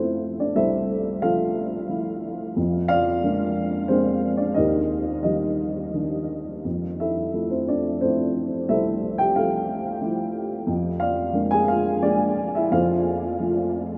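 In 3/4 at 89 BPM, the time flexes freely with rubato, giving this classical solo piano passage a lyrical, unhurried sway. A single upright piano carries the whole 14-second excerpt, reaching from C2 up to Ab5 with a dark, woody, boxy tone that sits up front. Set in F major and tuned to A4 = 439 Hz, the harmony moves from Fmaj7 through Bb7/F and Ebmaj7, returns to Fmaj7 at 6.7 seconds, passes through Bb7/F again at 10.7 seconds, and comes to rest on F at 12.7 seconds. The mood is hopeful and sunny, and the piano's character is mellow. A huge, wet reverb with an 8.0-second decay places the instrument in a vast, echoing space. The passage is cut from a longer piece.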